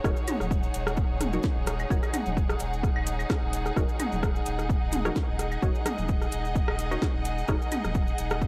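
This excerpt of minimal techno opens at once with a punchy, overdriven electronic kick up front, a thick saturated sub bass holding Eb1 under sidechain pumping, and a bowed studio string section playing over an Ebm7 chord in Eb minor. It moves at 129 BPM in 4/4 with a light swing on the sixteenths, and the mood is hypnotic and quirky. Muted, detuned dub chord stabs sit in the background with a filter pluck and sub octave, colored by phaser, analog chorus and analog delay, and they stop at 7.6 seconds. A minimal click kit of claves, rim clicks and toms, treated with analog delay, adds quirky detail, while a grainy cabasa sits close and bright in the background. From 0.3 seconds a house kit brings a cracking snare and metallic hats, overdriven and re-recorded in a large room. The dry, gritty hardware sound carries the whole excerpt across the harmony's single Ebm7 chord.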